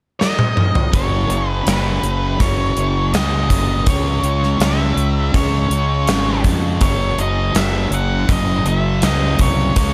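Shoegaze-leaning dream pop rock at 82 BPM in a blissful, hazy mood, this excerpt opens with a gated 80s drum kit fill of tight kick and medium-tuned snare in a bright stone room before a double-tracked thick fuzz guitar riff with lush chorus and an up-front, round, overdriven fingered bass enter at 0.9 s beneath an octave-fuzz lead guitar melody trailed by tape echo, moving from F#sus4 to C#m to F#5 in a dark production.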